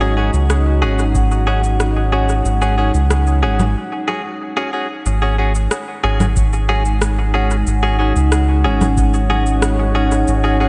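A round, dark analog bass sits up front in this hazy, spacious ambient dub excerpt at 92 BPM, anchoring a moody, detuned pad with chorus and a mellow vibraphone whose soft-mallet arpeggios ring through analog delay in the background. Bright, twangy stabs from a clean, direct-recorded electric guitar trail dub echo, while overdriven electronic cabasa, rim click and congas carry their own dub echo, and a deep, overdriven electronic kick drum appears briefly at 1.1 seconds before returning at 6.4 seconds after a break. The whole dreamy mix is soaked in a lush hall reverb with a dulled top end, opening on an Ab7sus4 chord.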